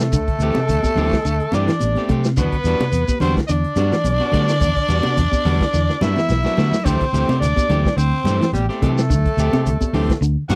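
A warm, distant trumpet carries the melody over a raspy, gritty tenor saxophone second line from the first moment of this hypnotic, funky afrobeat excerpt at 107 BPM in D mixolydian, moving between D9sus4 and Em9 with a lightly swung sixteenth feel. Two slightly broken-up electric guitars, one picking arpeggios in the background and the other playing stabs, sit over a dark, round fingered bass, a vintage drum kit with a punchy kick and a rolled-off top, a grainy shekere and ringing, high-tuned congas. The drums play a fill from 5.7 to 6.9 seconds before the section repeats, all captured in a dry, close 1970s-style studio sound.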